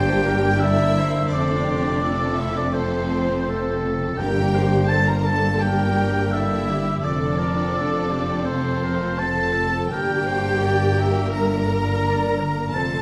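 Sorrowful and bittersweet, this rubato cinematic excerpt in G dorian at 84 BPM sets a soft, vibrato-laden violin section melody alongside a second violin line, oboe, clarinet and a very quiet, pure flute group, with distant violas, tight French horn chords, a bright ringing harp, lush cellos and double basses on the bass, and a very quiet timpani touch at 4.2 seconds, all bathed in a wet stone-room reverb.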